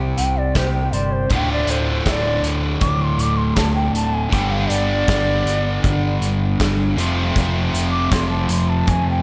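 A big arena sound, set in a moderate, lush hall reverb, frames this angsty, dark quiet-loud alternative rock excerpt, where a close-miked bansuri carries an airy, unsteady melody with vibrato, a soft attack and slapback echo. A lo-fi, slightly broken-up guitar through a small old amp plays fingered arpeggios until 1.3 s, when a sludgy, gloomy distorted guitar takes up a riff alongside a bright overdriven guitar riff, both with slapback echo. Underneath, a growly, punchy overdriven bass and a loose indie drum kit, with a tight kick, medium-tuned snare and hi-hat sitting up front in a pumping small room, drive the harmony through Cadd9, Dm, G and F.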